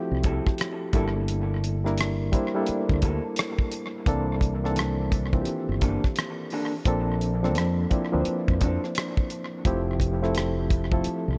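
R&B with a neo-soul lean, this short cut from a longer piece has a soulful, late-night mood and a relaxed swung sixteenth-note feel. A reedy electric piano sits up front, carrying the chords with a fast tremolo and tape echo, moving from Fmaj9 through Gm69, C13 and Bbmaj9 before settling back on Fmaj9. Beneath it, a fretless electric bass gives a punchy, warm low end, while a damped 70s drum kit plays hi-hat, a tight kick and rim clicks with a dry, up-front sound touched by tape echo. In the background, an electric guitar through a small old amp adds a dark, slightly broken-up, lo-fi second line, also treated with tape echo, before dropping out at 8.8 seconds. Light reverb and heavy echo give the whole mix a hazy, nocturnal glow.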